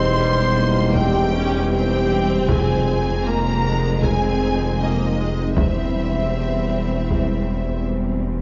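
A roomy concert-hall reverb surrounds this short cut from a cinematic hybrid orchestral and electronic score, its sound dark and rounded, with the highest frequencies rolled off, and its mood relentless and vast. A lush symphonic violin section carries the melody with vibrato and a soft attack, while a clear studio violin section adds a second line and focused violas fill in the accompaniment behind them. Distant French horns and a tight, very quiet trombone section hold sustained chords alongside a warbling, nostalgic tape-like pad, detuned and lo-fi, with chorus and its own reverb. The low end is deep: a rich cello section, a distant double bass section and a thick, saturated sine sub bass all sit on the bass line. A very quiet, vintage-sounding taiko ensemble struck with hard sticks enters at 1.0 seconds, and the harmony moves from C/E to Fm7 at 2.5 seconds before returning to C/E at 5.6 seconds.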